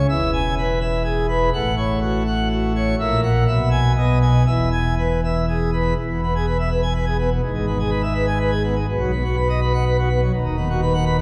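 A classical organ toccata in triple metre, majestic and dramatic, this short passage is cut from a longer piece. A single pipe organ plays alone throughout the 11.2 seconds, drawn on a full plenum with mixtures that gives it a brilliant, romantic voicing and places it up front. Its range reaches from a deep D#1 up to G#5, filling the sound from the bottom to a gleaming top. The reverberant church acoustic lets each chord ring out with a long tail of nearly three seconds. The harmony moves through a broad cadence in the opening part, then a second section from 6.0 seconds moves through chords that land on the dominant.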